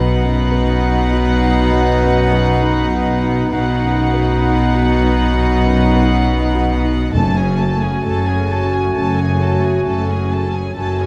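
Closely miked and lightly reverberant, this bittersweet, sorrowful cinematic orchestral passage drifts at 66 BPM in a rubato 4/4 over a B chord. A floating, sul tasto violin section carries the melody while a breathy clarinet, a pure concert flute and a second, background violin section weave second lines, with a dark viola section and a felt-muted, intimate upright piano as accompaniment, a mellow, roomy French horn section holding sustained chords, and a very quiet, ringing harp playing arpeggios. Woody double basses sit up front with a cello section joining them on the bass line, and at 7.1 s, as the harmony moves to F#madd9, a soft, round timpani note sounds.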